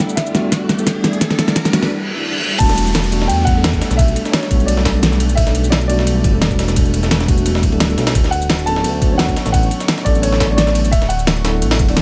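A dark, intimate grand piano melody with tape echo and audible action noise opens this soulful, melancholic liquid drum and bass excerpt, over a mellow tine electric piano, a very quiet ethereal pad, a fat-snared pop drum kit with crisp hats and cabasa, and a knocking electronic kick, while a riser builds through a drum fill and a reverse cymbal follows. At 2.6 seconds the drop arrives: a smooth, nasal synth bass sits up front, and a gritty, pitched-up breakbeat kit with a high-tuned snare and ride cymbal joins the pop kit. Light reverb surrounds the Em11, Bm9/D and D69 chords, and a downlifter rounds out the electronic effects, which end by 5.4 seconds.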